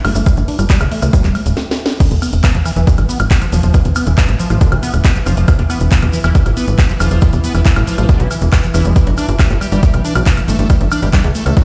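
Heard through a big sound system in a bare, stone-walled room, this hypnotic, intense psychedelic trance excerpt drives along at 138 BPM. A punchy, up-front electronic kick and a tight, sawtooth-and-square sequencer bass with ring modulation and a plucky filter lead the mix, joined by a squelchy, resonant acid bass riff with chorus and digital delay. A techno kit brings a cracking snare, metallic hats, handclaps, crash and woodblock, while a grainy acoustic shaker and a detuned, warbling wavetable pad sit in the background. After a drum fill and stop at 1.6 seconds, the drop lands at 2.0 seconds.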